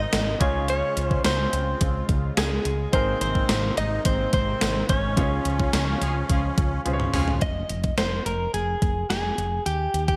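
A straight 4/4 groove from an overdriven, gated 80s digital drum machine with a thumpy kick drives this romantic, nostalgic 1980s-style pop excerpt, where a clean, direct-recorded electric guitar with delay carries the melody over a growly, round fretless bass, while a reedy musette accordion with delay, a brilliant concert grand piano and a lush, detuned unison pad with chorus sit in the background until they drop away by 7.5 s, distant, roomy horn stabs arrive at 6.0 s amid a band accent and drum fill, and light reverb and digital ambience polish the bright production.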